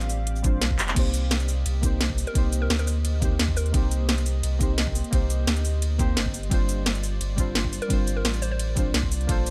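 A rolling, lush stretch of liquid drum and bass in C dorian at 173 BPM opens on a dark, warbling chord stab with chorus and delay, a glassy, ethereal FM pad with ensemble chorus and sidechain pumping, a round sine sub bass up front, and a tape-toned, layered electronic kit of cracking snare, metallic hats, ride, crash, cabasa and handclaps, with a knocking kick joining at 0.4 s, a drum fill at 0.8 s, and a hollow, detuned square pluck drifting in the background with dub echo from 2.3 s as the chords move from G7sus4 to Cm7 and back to G7sus4.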